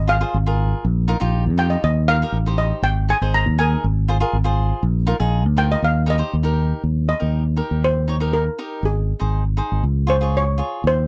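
Carefree and bouncy, this short calypso cut from a longer piece moves at 120 BPM in a straight 4/4, centred on Eb major before turning to Eb mixolydian at 6.8 s. A round, amped fingered electric bass sits up front, a crisp, picked cavaquinho supplies acoustic accompaniment, and a double-seconds steel pan struck with hard rubber sticks leads with a dark, smooth, shimmering metallic tone. From 6.8 s the pan takes a solo over chords moving from Eb to Ab and Db, in a dry, close 1970s-style studio recording.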